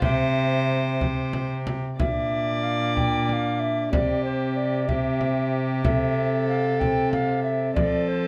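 Festive yet stately, this renaissance-style consort dance in 6/8 sets a hollow, chiffy alto recorder melody over a gut-string viola second line, a mellow trombone accompaniment and a rich, up-front bowed cello bass, with a deep frame drum played with hard hands, in a lightly reverberant room, as the harmony moves from C to Bb at 2.0 seconds and settles on F at 7.8 seconds in this brief cut from a longer piece.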